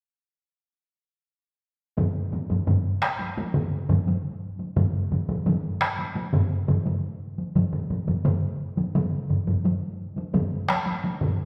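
A lush hall reverb rings around this short cut from a longer piece of Japanese traditional taiko drumming, set at a steady, straight 86 BPM in 4/4 with a ceremonial, powerful mood. Three taiko ensemble parts enter together at 2.0 s and sit up front in the mix, two struck with heavy sticks and one with hard sticks. The drumming holds through to about 11.4 s, its strokes carried by the long, resonant decay of the space.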